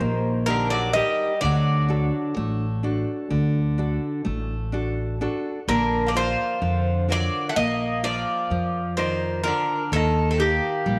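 Greek folk for a bouzouki band, reflective and dark, moving at 127 BPM in 9/8 through chords of Eb, D and Bb in this 11-second cut from a longer piece. An up-front bouzouki picks the melody with a metallic, double-string ring, while a second, brighter bouzouki carries a lower line touched by slapback echo, beside a bright fingerpicked nylon-string guitar in classical style and a woody pizzicato upright bass, both close to the ear. A moderate echo chamber reverb and small room ambience surround the ensemble, with the music shifting to a new section at 5.7 seconds.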